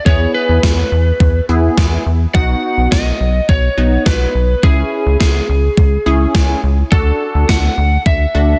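A rubbery, wave-folded square bass and a thumpy, overdriven drum machine with gated snare reverb sit up front in this nocturnal, driving synth-pop excerpt, under a punchy, detuned sawtooth polysynth comp with chorus and shimmer reverb and a slightly broken-up, picked lead guitar melody over chords moving from E through B and C#m to Dadd9, all in a dense, heavily limited modern master.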